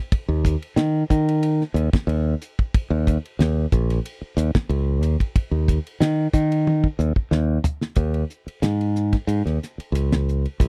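Electric jazz fusion with an intense, funky straight feel, this short passage cut from a longer piece pairs a bright, growly fingered electric bass with a damped 1970s acoustic drum kit, both sitting up front from start to finish. The bass ranges from Bb1 to Eb3 with a direct tone, while the kit offers a fat snare, a tight kick, hi-hat, ride cymbal and toms, and a drum fill from 6.7 to 8.0 seconds leads into a new section. The close, dry studio sound carries little reverb, giving the pair a 1970s character.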